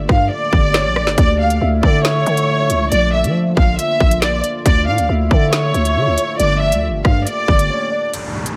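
A half-time drill groove at 138 BPM drives this menacing, tense hip hop excerpt, its electronic drum kit pairing a hard-clipped kick and woody snare with crisp hats and a rim click, up front beside a growling, buzzy 808-style bass that runs until 7.7 seconds. Over a deep, moody pad of sustained chords, softened by chorus and reverb in the background, a studio violin section carries the melody with smooth, bowed vibrato, joined from 0.7 seconds by a round, octave-layered synth lead on a second line, treated with chorus and digital delay. Moving through Gmadd9, Dm and Bb, the passage closes with an electronic downlifter at 8.1 seconds.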